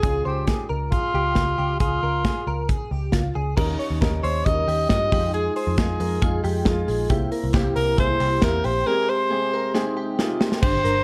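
Bittersweet and wistful, this jangly indie pop excerpt moves at 136 BPM in a straight 4/4, led by a breathy, whispered alto saxophone melody sitting up front with slapback echo and plate reverb, over woody upright piano, a chorused, compressed clean electric guitar picking bright arpeggios, and a dark, foam-muted picked bass. A punchy modern drum kit with bright cymbals drives the groove through chords moving from Db to Eb7, Fm7, C7 and Abmaj7/C, while a ringing vintage vibraphone with fast motor vibrato joins in the background at 3.6 seconds. A very quiet, distant group handclap surfaces at 7.5 seconds, and a drum fill at 9.7 seconds closes out the passage.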